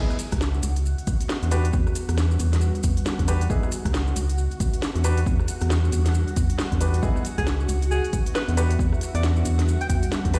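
A hollow, organ-like FM bass sits up front with a fast, decaying attack, anchoring this skippy, late-night two-step UK garage excerpt at 136 BPM with a 60% swing on the sixteenths. Polished grand piano stabs carry a tape echo, while a silky string machine holds mellow sustained chords through phaser and ensemble chorus, pumping under the sidechain alongside a deep, warbling ambient pad that stays in the background with chorus and its own reverb. The garage kit brings a cracking snare, crisp hats and rim clicks, joined by a punchy analog kick and grainy, close maracas. The harmony alternates between C#m9 and Em9 throughout. At 7.4 seconds a breathy alto saxophone enters with a soft attack and light vibrato, playing a jazz-style solo line through tape echo until 10.0 seconds. The whole mix has a light reverb and the air of a big sound system in a bare room.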